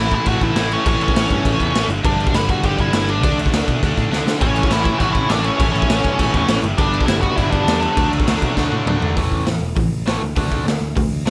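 Punk rock at a fast, straight clip, energetic and upbeat, this brief cut from a longer piece opens with a nasal lead guitar, dark and overdriven through a parked wah, carrying the melody up front until about 8.1 seconds. Beneath it, a very quiet, double-tracked high-gain guitar and an overdriven semi-hollow guitar with a hollow-body brightness play the riff. A picked electric bass adds a growly, amped low end. A raw garage drum kit sits up front with a punchy kick, dark cymbals and a saturated, gritty, rolled-off sound in a small, pumping room, dropping fills at 4.1 seconds and again just before the shift at 9.2 seconds. A biting overdriven guitar joins the riff at 4.4 seconds, and the whole mix stays dry.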